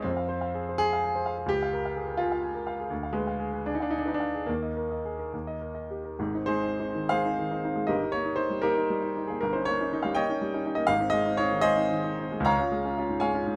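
A clear grand piano sits up front in a light reverb, its tone clear and present. This is a romantic character piece for solo piano in Ab major, moving in a flexible 6/8 with rubato that lets the pulse drift between 63 and 90 BPM in dotted quarters, and the tuning rests at A4 = 443 Hz. The mood is hopeful and passionate, with the piano ranging from G1 up to Bb5. The opening phrase leans into minor-tinged harmony, passing from Fm through Bbm7/Db and Ddim7 before settling onto Ebsus4 and then Eb. At 6.2 seconds a new section arrives on Ab, moving through Eb/G and Eb7/G back to Ab and reaching Db at 12.5 seconds. The passage is taken from a longer piece and stops at 13.6 seconds.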